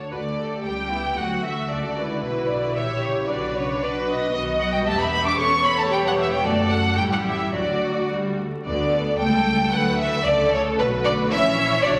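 An expressive, lush violin section carries the melody in this graceful, spirited classical-period movement for string orchestra, with a focused second violin section placed up front on an inner line beneath it. Smooth, even violas fill out the accompaniment while a cello section sits in the background and a symphonic double bass section anchors the bass, all bowed with vibrato and moving with a flexible rubato feel in 2/4. The ensemble sounds set on a reverberant scoring stage with a faint vinyl crackle, in a 12-second excerpt cut from a longer piece.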